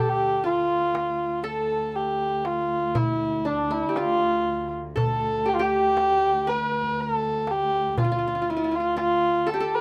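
Turkish makam ensemble music in 10/8 at 120 BPM, counted in eighths, set in D makam huseyni with a melancholic, longing mood, cut from a longer piece. A dark, woody kamancheh carries the melody up front, a single bowed player shaping its line with vibrato and portamento, ranging from D4 up to a microtonally lowered B4. Beneath it, a qanun played with fingerpicks adds a second line in the same register, its triple strings giving a bright-edged sound. A dark chamber cello section, bowed with vibrato and a smooth top, holds a low drone on D2 throughout. A metal-shelled darbuka enters at 0.9 seconds with a crisp, close and dry sound, and the ensemble sits in a small room with moderate reverb.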